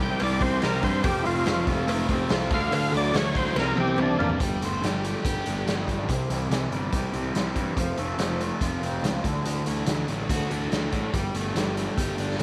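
A gritty, up-front classic rock excerpt with studio reverb and a confident, sunny mood, moving at 143 BPM in straight 4/4. A thick, overdriven tonewheel organ carries the melody from 0.0 to 4.4 s with percussive third-harmonic attack, chorus vibrato and slapback echo, backed by a barely audible rotary organ, a boxy old ladder-braced acoustic guitar, a very quiet dry cowbell, a double-tracked, scooped distorted guitar, and overdriven electric and phased semi-hollow guitars riffing in the background. A round, fuzzy bass and a punchy, saturated garage drum kit in a stone room drive the chords from C through F, Dadd9 and Gsus2, with a drum fill from 3.6 s and a nasal parked-wah lead guitar adding a brief second line at 4.4 s.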